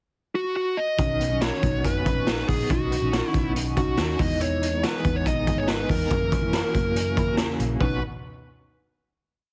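A smooth, dark, overdriven lead guitar opens this bright, breezy jangly indie pop piece at 0.4 seconds, playing a motif-based melody up front with slapback echo over a pickup bar. At 1.0 seconds the band joins: a gritty garage drum kit with a punchy kick and brisk backbeat, a round, foam-muted vintage bass with slides, a twangy electric guitar through a small old amp rolling out fingerpicked arpeggios with tremolo and slapback echo, and a full-bodied, fingerpicked plugged-in steel-string acoustic guitar in the background. The verse moves through Badd9, Emaj7 and F#7 before landing on a final Badd9 chord, heard in a small room with a heavily compressed, radio-like sound.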